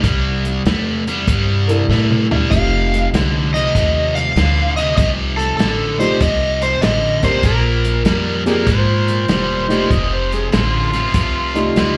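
A swung 97 BPM shuffle in 4/4 drives this swaggering, soulful electric blues in F mixolydian, where a picked, up-front electric guitar riff with slapback echo, woody pizzicato upright bass and a muffled, lo-fi soul drum kit play throughout, a boxy, mellow upright piano enters at 1.7 s, an overdriven slide guitar played with fingerpicks carries the melody from 2.5 s after a drum fill, and a gritty amplified harmonica with tongue slaps, scooped notes, slapback and tape echo takes a jazz-style solo line from 8.5 s, the band heard through a club PA with light reverb.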